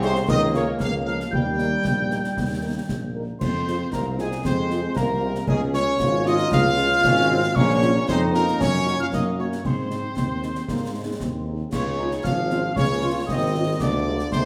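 A military-style march for wind band in 2/4, this festive, spirited passage is cut from a longer piece. A trumpet section carries the melody with a light vibrato and a smooth top, while an airy, hollow piccolo, close-miked and tongued, and a vintage-toned euphonium in the background each play a second line. Beneath them, a very quiet, distant French horn section adds accompaniment, a dark, tight trombone section holds sustained chords, and a warm tuba anchors the bass as a roomy solo voice. Concert snare drum, concert bass drum and clash cymbals, the cymbals bright, drive the march from the start. The band is heard from further back in a large studio, wrapped in a wet reverb, and the French horns stop at 14.2 s, just before the others.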